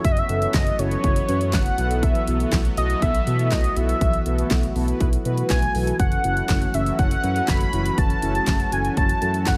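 Synth-pop at 121 BPM in F# minor, cool and melancholic, this short excerpt moves from F#m7 to B7sus4 and back while an up-front electronic drum kit drives a punchy kick, handclaps, bright hats and a fat snare beneath a smooth, dark sawtooth bass. A bold, retro octave-doubled lead carries the melody between C#5 and B5 with vibrato, chorus and phaser, while a resonant, evolving pad with a slow attack and a filter swell holds sustained chords. From 0.3 seconds a round, brassy synth section adds detuned accompaniment with chorus and phaser, all set in light reverb.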